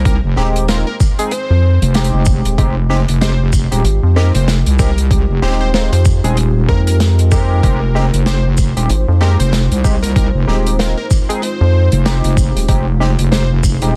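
A dark analog pad and a heavy, saturated wobble bass open this swaggering, gritty glitch hop excerpt at 95 BPM in F minor, with the moody pad sitting in the background on a held Fm7 under chorus, phaser and sidechain pumping while a swung 16th-note feel carries the groove. An overdriven, thumpy electronic kick sits up front beside a distant, roomy soul drum kit of hi-hat, shaker and snare, joined by a barky tine electric piano playing stabs through a combo amp and a punchy, catchy unison lead with delay. From 0.4 seconds a rubbery, nasal square bass with a resonant filter pluck bounces alongside the wobble, all within a small room, a dense, heavily limited modern master and a layer of vinyl crackle.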